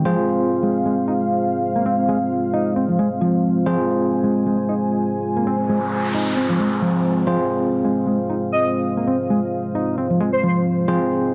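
A moderate plate reverb lends depth to this gritty, raw breakbeat excerpt, which swings its sixteenths over a single F minor chord. A dark analog pad holds sustained chords up front, its detuned sawtooth tone deepened by a sub octave and softened by chorus. A picked electric bass plays a round, amped riff through tube saturation, a low-pass filter and dub echo until 11.0 seconds. An overdriven tine electric piano adds stabs with medium tremolo, 12-bit sampler grit and dub echo, sounding as if through a combo amp. An electronic noise sweep sounds briefly from 5.6 to 7.3 seconds. Then, at 8.5 seconds, an airy, dreamy lead enters with a soft, sine-based melody carrying vibrato, phaser and a small speaker sound.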